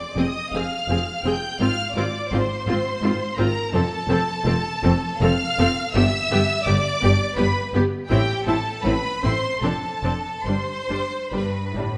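A rich, vibrato-laden violin section sings the high melody over a bright, intense second violin line in this serene, slow romantic string orchestra excerpt in a rubato 3/4, while clear violas carry the accompaniment and smooth cellos and even double basses anchor the bass, the bowed ensemble shifting from F minor to F major and on toward A minor within a moderate recital hall reverb.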